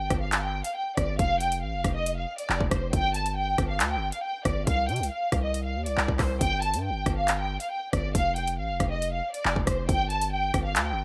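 The drill groove moves in a half-time 4/4 feel, with a kit of handclaps, metallic hi-hats, a rim click and a hard-clipped kick that sits up front and carries the sheen of a large room. Beneath it, a distorted 808-style bass fills the low end, its sine tone thickened with a noise layer and saturation, each note striking with a fast attack before decaying. Over the top, a studio violin section carries the melody as a lush, bowed ensemble, its expressive vibrato softened by a low-pass filter. Harmony is sparse, with the parts mostly sounding over open ground and settling on G5 at 2.9 and 9.9 seconds. The mood is ominous and cold, wrapped in digital ambience and the rough, unpolished balance of a home demo, in this short passage cut from a longer piece.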